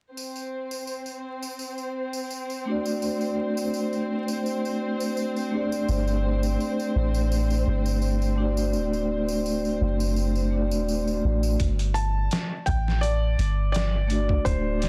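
Trip hop at 84 BPM with a smoky, brooding mood, this piece opens on distant, woody violin-section chords and a small-room tambourine, soon joined by a soft-mallet vibraphone treated with harmonic tremolo, 12-bit sampler grit, a filter sweep and tape echo, then a deep, round 808-style bass at 5.9 seconds, before a pitched-down, compressed sampler drum kit with a thumpy kick arrives at 11.6 seconds and a felt-muted upright piano carries an intimate melody with audible action noise and its own tape echo over chords moving from Amadd11 through D to Gsus2, framed by vinyl crackle and a dense, heavily limited master.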